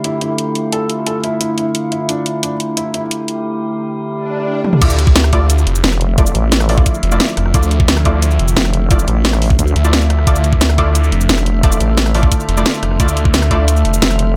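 A digital ambience with light reverb frames this tense, futuristic excerpt of dark technical drum and bass, moving at 176 BPM in 4/4 and set in D minor over a Dmadd9 chord. It opens with an eerie, metallic FM drone holding sustained chords under chorus, while a felt-muted upright piano plays soft, boxy arpeggios with audible action noise until 3.0 s, passing through a low-pass filter and delay. Filter sweeps on the piano and the layered drum kit build the opening, and the kit's cracking snare, hi-hat, shaker, rim click and toms sit up front. An electronic swell and a drum fill lead into the drop at 4.8 s, where a knocking, layered electronic kick, bold orchestra-hit-like synth stabs with a bright, punchy pluck, and a swirling, thick, detuned saw bass with phaser and tube saturation all arrive together. At 5.8 s a nasal vowel-sweep wobble bass joins, its resonant formant filter giving a compressed, wobbling tone beneath the stabs. 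The drone and the saw bass breathe with sidechain pumping through the drop, keeping it driving and heavy, just as the piano pumped during the opening.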